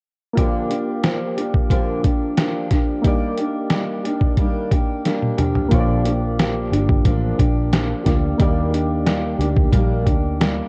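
A fingerpicked steel-string acoustic guitar sits up front in this hazy, nostalgic slice of indie and bedroom pop, its tone smeared by a lush chorus and a warbly pitch drift as it plays from 0.4 seconds onward. Underneath, soft electric-piano-like synth keys add a round, gentle, full-bodied glow with their own chorus, moving between Bb6 and Ebmaj7 chords in Bb major at an unhurried 90 BPM in straight 4/4. A lo-fi sampler-style drum kit, compressed, pitched down and muffled, supplies a thumpy kick and fat snare alongside hi-hat and toms, and a drum fill between 5.1 and 5.7 seconds leads into the second section. At 5.7 seconds a vintage muted fingered electric bass enters, dark and foam-muted, deepening the low end. Light reverb and the worn, warbling character of old cassette tape colour the whole recording, which is cut from a longer piece.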